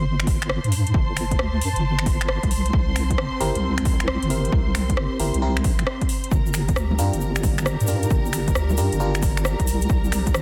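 Distant, lush violin chords and a deep, dark wobble bass open this moody, late-night two-step UK garage excerpt at 134 BPM in G dorian with swung 16ths, both pumping against an overdriven, punchy electronic kick and a house kit of congas, finger snaps, metallic hi-hats and rim clicks, while an airy, breathy pad sits in the background, a glassy, bell-like FM electric piano with phaser and delay stabs in at 3.4 seconds over chords moving from G5 to C7 and Gm7, and a grainy egg shaker joins at 6.3 seconds under a dense, heavily limited master.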